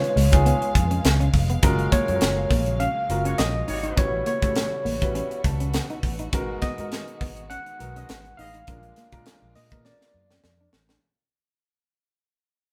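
A barky, overdriven electric piano with fast tremolo carries the melody over intimate grand piano, lush background strings and a crisp, up-front fusion kit, setting a nocturnal, urban mood for this polished 1980s jazz-funk pop at 102 BPM with a light sixteenth-note swing. A round fingered bass and a dark, clean semi-hollow guitar riff join at 0.2 seconds, while a tight, vintage horn section adds two brief second lines, the first at 3.2 seconds, as the band plays live in a moderate studio reverb. The chords move from Db7 through Gbmaj7, A13 and Abm7 to Bb7, with a grand piano fill at 5.2 seconds and a drum fill closing out the fading clip.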